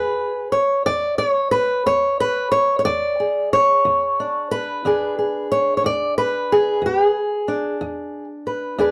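A fingerpicked old ladder-braced acoustic guitar carries this short acoustic country blues fragment alone. It sits up front with a dark, boxy, woody tone from old strings, ranging from E2 to D5 over an E7 chord in E mixolydian. The feel is gritty and laid-back at a slow 60 BPM in 12/8, set in a moderate studio ambience, and the 8.9-second clip is cut from a longer piece.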